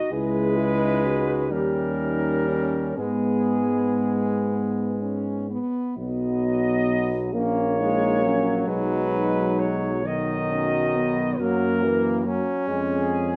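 In a slow, rubato 6/8 that drifts between 39 and 48 BPM in dotted quarters, this elegiac, melancholic brass band piece moves with the measured gravity of a hymn. It opens in G# minor and turns toward B major at 6.0 seconds, lending the second half a brief, sorrowful glow before the excerpt breaks off at 13.4 seconds, cut from a longer work. A dark cornet carries the melody with light vibrato, sounding distant and roomy. A mellow French horn section, smooth on top, sits in the background with a second line. A warm euphonium and a clear, close-miked trombone fill in the accompaniment, and the tuba anchors the bass up front with its own light vibrato. A moderate stone-room reverb gives the band a solemn, resonant space, in a classical style throughout.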